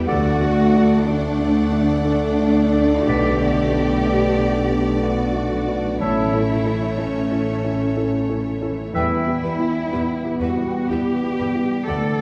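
A slow, rubato 3/4 at 61 BPM carries this bittersweet, longing film-score passage in E dorian, moving through D, Bm, A and Em. A rich violin section sings the melody over a second violin line, joined by a clear solo oboe and clarinet and an airy, hollow flute section, while rich violas, French horns holding sustained chords, ringing fingerpicked harp arpeggios and a dark, mellow grand piano fill the background. Smooth, close cellos and an intense, bright double bass section anchor the low end, all set back in a wet scoring-stage reverb.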